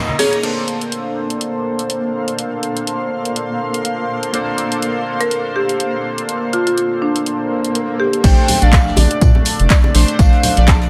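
A sunny, soulful, swung deep house excerpt opens on glossy, chorused polysynth stabs with sidechain pumping and delay, alongside a brief accent from congas and bongos, woody marimba, a very quiet vintage kit, and a house drum kit whose handclaps, hi-hat and crash run on through the piece. A cloudy granular pad drifts in at 1.6 seconds, the marimba returns with gritty sampler texture and tape echo, and an electronic swell sits in the background just before the drop at 8.2 seconds. From there, a punchy, overdriven kick sits up front beside a round, deep analog bass, with a velvety synth lead carrying chorus and vibrato, ringing hand percussion, and the saturated vintage kit's snare and tambourine, all in light small-room ambience.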